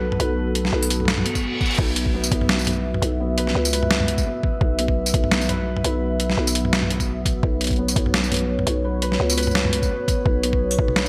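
A dark analog pad, built from detuned sawtooth and triangle tones with a sub octave, opens the music with slow-attack sustained chords on a B5 harmony, its chorus shimmer pulsing under sidechain pumping, while a felt-muted upright piano plays soft, intimate arpeggios coloured by vintage 12-bit sampler grit and delay. This is tense, cinematic half-time drum and bass at 170 BPM in 4/4, with a 55% swing on the sixteenths, cut from a longer piece. A growling, buzzy 808-style bass with a fast attack and decaying tail holds the low end from the start, and a boom bap sampler-style drum kit enters at 0.1 seconds, its pitched-down, compressed crash, hi-hat, medium-tuned snare, tambourine and toms sitting up front in gated reverb. A brief electronic reverse cymbal rises at 1.3 seconds, leading into a thumpy, gritty electronic kick drum that joins at 1.4 seconds and pushes forward in the mix. The whole is set in a lush hall reverb with a bright 1980s-style digital sheen, contrasting the moody pad and mellow piano against the gritty, compressed drums.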